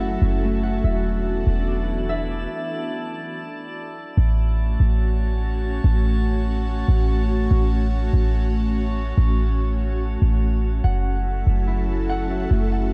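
A half-time 4/4 groove at 144 BPM carries this blissful, floating hip hop excerpt in A major, where a deep, boomy 808-style bass sits up front beneath an airy, detuned pad of sustained chords, a ringing thumb-plucked Celtic harp with tape echo plays arpeggios until 5.1 s and returns at 10.8 s, and a glassy texture of drifting overtones hovers high above, all within a dark production that pauses for a stop from 2.5 s before moving from F#m7 through A6 and back.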